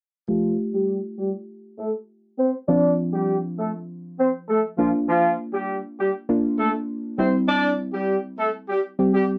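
At 0.3 seconds a dark horn section and a soft, round pluck begin together in this short, carefree pop excerpt at 100 BPM in a straight 4/4, set in F major and tuned to A4 = 435 Hz. The horns carry the melody across a range of F3 to D5, punchy and roomy with light vibrato and octave doubling, softened by a low-pass filter and given a slapback echo. Beneath them the pluck supplies accompaniment between F3 and G4, gentle with a fast attack and a decaying tone, a chorus shimmer and a filter sweep that runs the length of the passage. The chords move from Fadd9 to Dm7/F, then Bb and C, lending a summery, easygoing lift. The sound is that of a dry, close 1970s-style studio recording with a moderate booth ambience, and the passage is cut from a longer piece, ending at 9.4 seconds.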